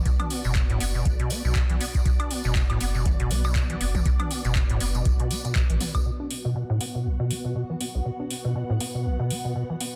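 A dense, heavily limited modern master with light digital ambience frames this hypnotic, trippy acid house cut, taken from a longer piece and running at 120 BPM in 4/4 with a 16th-note swing in B minor pentatonic. Up front, a squelchy, hollow square-wave acid bass carries the riff with a resonant, filtered bite, fast attack and decaying notes, roughened by tube saturation and trailed by subtle chorus and tape echo. Beneath it, a thick, triangle-based saturated sub bass and an overdriven, deep analog kick drum anchor the groove, joined by a jingly, bright acoustic tambourine caught in a live room. An overdriven electro analog drum machine adds handclaps, metallic hi-hats, toms and woodblock throughout. A lush, vintage sawtooth string machine with a sub octave holds slow-blooming, long-releasing chords through ensemble chorus and sidechain pumping. Around 6.0 seconds the kick, sub bass and tambourine drop out, and from 6.1 seconds a filter sweep on the strings colours the closing stretch.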